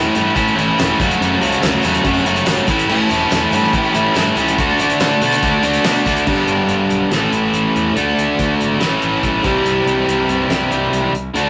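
A bright, double-tracked distorted electric guitar drives this sunny, confident classic rock excerpt at 142 BPM in A mixolydian, its picked riff sitting up front over a dark, round fuzz bass and a damped 70s drum kit with a fat snare and tight kick. A nasal lead guitar with a parked wah adds a brief overdriven second line in the background from 2.9 seconds, while a very quiet, jingly tambourine adds shimmer through the first half. At 6.3 seconds the band drops into a half-time feel, all captured in a rough rehearsal-room recording with saturation and a short, wet studio reverb.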